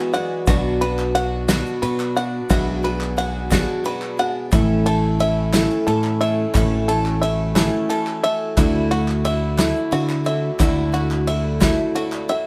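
Indie folk in a lilting 6/8, hopeful and gently glowing, this short excerpt taken from a longer piece has the feel of a band playing live together in one room, with a moderate studio reverb around it. Twangy, up-front banjo arpeggios ride on top, while a woody, shimmering twelve-string acoustic guitar with an octave-doubled ring and the slightly dull character of old strings picks out accompaniment beneath. A boxy, dark upright piano sits in the background and steps forward with short fills at the very start, around 3.5 seconds and again near 11.6 seconds. A tight, very quiet brass section holds mellow sustained chords with a light vibrato, and a direct, warm fingered electric bass enters at 0.5 seconds, up front in the mix. The acoustic drum kit, played with bundle sticks, pairs a punchy kick and medium-tuned snare with dark ride cymbal, joined by hollow group handclaps and a grainy, barely audible egg shaker as the harmony moves from Bm to A to Dadd9.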